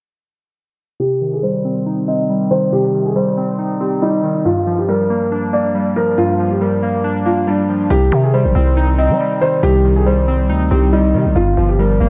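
An echo-heavy mix with light, small-room reverb gives this tense, ominous hip hop cut a shadowy, enclosed sound. Set in C minor at 139 BPM with a half-time feel, it moves between Cm and Gm7. From 1.0 seconds a dark, mellow concert grand piano carries the melody, its boxy, bass-rich tone softened by a low-pass filter and trailed by analog delay. Beside it, warbly lo-fi synth keys supply the accompaniment with a nostalgic, vintage character, blending square and sawtooth waves through chorus, low-pass filtering and delay, and a filter sweep runs across them until 7.9 seconds. At that point a growling, buzzy 808-style bass arrives up front, its sine-based tone striking fast and decaying, adding weight through to the end of the cut at 12.1 seconds.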